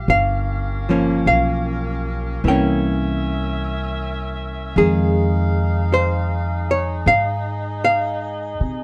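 Melancholic and wistful, this slow jazz ballad fragment at 52 BPM swings in F minor, tuned to A4 = 436 Hz, with a dark, clean, hollow-body archtop guitar picking the accompaniment up front, a woody, thumpy pizzicato upright bass on gut strings also placed forward, and a distant, roomy saxophone section holding warm sustained chords with vibrato as the harmony moves from Gm7b5 to C7b9 and settles on Fm7, all within a dry, dusky mix.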